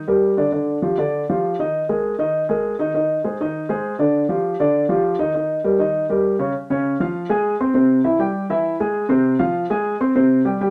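Set in a moderate studio reverb, this fiery, passionate Latin excerpt features a solo concert grand piano, dark and mellow with a deep bass and placed up front, moving through chords such as Ebmaj7, Bb7sus4 and Eb7 before shifting at 6.5 seconds into a second section that passes through Db, C and Fm to close on Gsus4.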